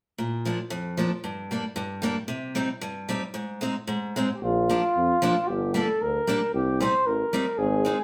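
A live band recorded together in one room, with a wet studio reverb, gives this excerpt of a jolly alpine folk dance in Bb major a roomy glow at 114 BPM in a straight, bouncy 2/4. A bright picked steel-string acoustic guitar with fresh strings and the occasional finger squeak opens alone at 0.2 seconds, laying down the accompaniment through a chord progression that moves from Bb to Gm, Cm and Ab. At 4.3 seconds a mellow flugelhorn enters with the melody, its soft attack and light vibrato in a classical style, and at 4.4 seconds a warm tuba joins underneath on the bass line as the second section begins.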